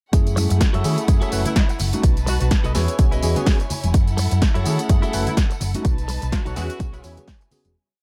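An overdriven, four-on-the-floor electronic kick sits up front in this sensual, nostalgic filtered disco house piece, joined by a punchy analog drum machine's hats, snare and tambourine, very quiet maracas and congas, a dark, round hollow-body bass line with funky syncopation, a worn, slightly out-of-tune tine electric piano with phaser, a twangy, clean direct-recorded guitar riff from 0.4 s, a rich bowed violin section pad, and a warm horn section adding short delayed phrases from 1.5 s, with sidechain pumping on most parts before a fade-out from 5.2 s.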